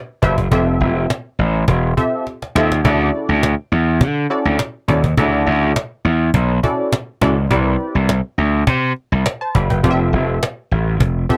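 At 0.2 seconds a gritty slap bass, a cajon and a funky polysynth comp all come in together, opening this early-eighties boogie funk excerpt from a longer piece at 103 BPM in a straight 4/4. The overdriven electric bass is bright and punchy, sitting up front and carrying the strongest presence in the mix. The cajon sounds woody and hand-struck hard, with faint snares and a small-room acoustic character, and it drops a short fill at 2.3 seconds. The polysynth comp is nasal and detuned, a sawtooth-based sound with a quick filter pluck and a chorus shimmer, moving through Cmaj9, Fmaj9 and Dmaj9 before returning to Cmaj9 and Fmaj9. Tuned slightly low to A4 = 435 Hz, the whole thing is captured in a dry, close 1970s-style studio sound that keeps the danceable, feel-good groove tight until the bass stops at 11.2 seconds and the others at 11.4.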